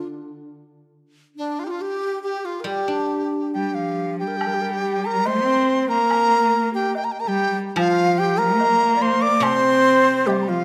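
Bathed in a wet recital-hall reverb, this graceful, tender excerpt of Chinese traditional chamber music drifts in a rubato 2/4 at 70 BPM in G yu mode, with a bright large dizi carrying the airy, buzzing melody up front over a breathy low xiao's vibrato-laden second line and a ringing, silvery guzheng accompaniment, while a rich, nasal bowed cello adds its own second line from 3.5 seconds and a woodblock taps quietly in the background from 4.4 seconds.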